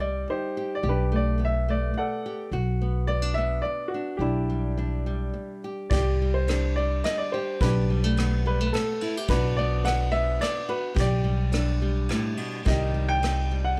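This excerpt of an intimate, nostalgic acoustic folk-pop ballad in a straight 3/4 opens with a clear, smooth upright piano carrying the melody, a vintage character to its tone that sits up front. Beneath it, a small, warm nylon-string guitar is fingerpicked as accompaniment, while a woody, thumpy upright bass, played pizzicato with a bright steel-string edge, holds the low end close to the listener. At 5.9 seconds, as the opening passage repeats, a soft brush drum kit enters from a distance, its roomy sound bringing a punchy kick, dark cymbals on the ride, rim clicks and a rolled-off top. The harmony circles through Cm, Gadd9/B, Bm and Em7/B, with Cmadd9 colouring the start of the second pass before Cm returns. Light reverb gives the recording a gentle sense of space.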